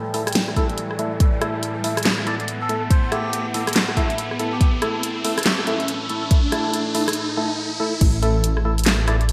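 Brooding and meditative, this deep dubstep fragment in half-time swing builds over a resonant, overtone-sweeping drone, hollow chorused organ stabs under a filter sweep, an electronic riser, an up-front deep kick and a layered kit with a huge gated snare, while a reedy, breathy melodica drifts through dub echo from 2.3 seconds, all washed in lush hall reverb and bright 1980s-style digital sheen until a short break gives way at 8.0 seconds to a drop led by a rumbling, beating detuned saw bass.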